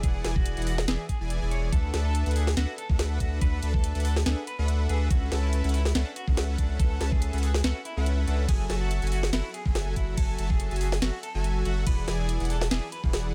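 Dry and close-sounding, this euphoric future bass excerpt moves at 142 BPM in a swung, half-time 4/4 in D lydian, with a knocking, up-front electronic kick and a tape-warm trap kit of sharp snare, bright hi-hats and ride cymbal beneath a deep, thick, saturated sub bass, a smooth detuned supersaw riff and a clean, picked electric guitar melody carrying tremolo and dub echo, the bass, supersaw and guitar all pumping to the sidechain as the chords travel from E9 through D6, A6/C# and F#m9 back to E9.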